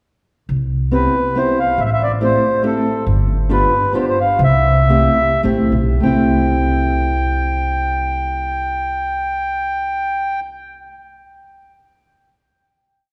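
A mellow, reedy accordion sits up front, carrying a smooth, motif-based melody in sentence-like phrases through this charming musette waltz in C major. The piece is in 3/4 with a rubato feel that ranges between 98 and 141 BPM. Beneath it, a fingerpicked acoustic guitar with old strings plays a woody, close-voiced backbeat chord rhythm. A pizzicato upright bass, also up front, marks roots and fifths on the main beats with a dark steel-string tone; it enters first at 0.5 seconds, with the accordion and guitar joining shortly after over Cmaj7, Am7, G7 and C6. The tempo slows from 3.1 seconds, and the waltz settles onto a final chord from 6.0 seconds, all bathed in a wet church reverb that gives the whirling trio a spacious, resonant hall sound.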